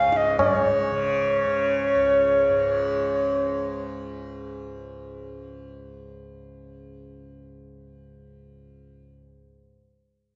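A short passage cut from a longer piece rings out in the lingering reverb of a recital hall, with the air of a church or concert hall and a top end that is gently rounded off. The music is serene, radiant Hindustani classical at 112 BPM in a straight 5/4. A close-miked bansuri carries the melody up front between Db5 and F5, its bamboo tone airy, reedy and crisp in attack, and it sings until 3.8 seconds. Beneath it a softly plucked tanpura holds a buzzing, shimmering drone from Db2 to Db3, sitting low in the mix and sounding on to 9.6 seconds. A low-tuned, ringing tabla is heard only in the opening moment.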